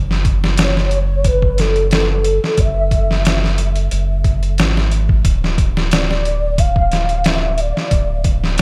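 A deep, round dub sub bass opens this hypnotic, melancholic trip hop fragment in F# minor, joined at 0.1 seconds by a sampler-style drum kit that sits up front with a gritty, pitched-down, compressed sound, a thumpy kick, a medium-tuned snare and hi-hat, re-recorded in a large room. The tempo is 90 BPM in 4/4, with a light swing on the sixteenths. At 0.6 seconds a breathy sine lead enters in a high register, its pure, vintage tone warbling with vibrato and gliding between notes through portamento, treated with ensemble chorus and tape echo. The bass holds sustained notes low beneath it while the harmony moves from F#sus2 to Dm at 5.2 seconds. A digital ambience surrounds the mix, and the dark, soft-edged lead sits further back than the bass and drums, giving the short passage a dreamy, shadowed feel.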